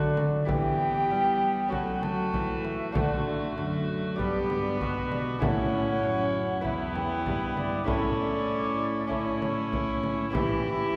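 Two reedy, gut-toned violas, a dark cello bass and a delicate, fingerpicked lute in the background open this courtly, rustic renaissance-style consort dance, joined at 0.2 s by an airy wooden baroque flute carrying the expressive, vibrato-tinged melody and a deep frame drum played with soft hands, the consort ringing in a church's lingering reverb.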